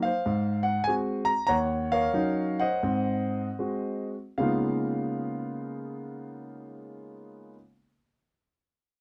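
A concert grand piano plays alone in this short solo jazz fragment, its tone natural and up front with a deep bass, moving through Ab7, Ebm7 and back to Ab7 while slowing down over the first 4.4 seconds. The feel is relaxed and sophisticated, a rubato swing in 4/4 that drifts between 71 and 101 BPM before settling onto a Db13 chord. The close, dry 1970s-style studio sound carries only a light touch of reverb.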